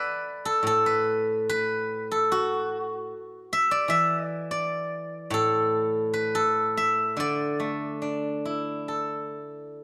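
A bright, silvery steel-string zither played with fingerpicks rings out up front as the sole voice in this flowing, serene piece of Chinese traditional music, moving in a free, rubato 4/4 at around 67-77 BPM in D gong mode, spanning A2 to B5 and captured with close, detailed microphones and light reverb in a 9.8-second cut from a longer piece.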